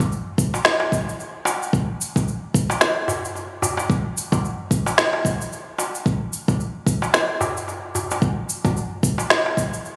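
Captured on a phone in the room and bathed in a lush echo-chamber reverb with a club ambience and compression, this short cut from a longer downtempo piece has a mystical, warm mood at 111 BPM in 4/4 with a swung sixteenth-note feel. Up front, a layered electronic kick with a deep low end plays until 9.7 seconds, while an overdriven electronic shaker and woody snare carry on to the 10.0-second close. Further back, a crisp, metal-shelled darbuka struck with hard hands adds an acoustic edge until 9.6 seconds.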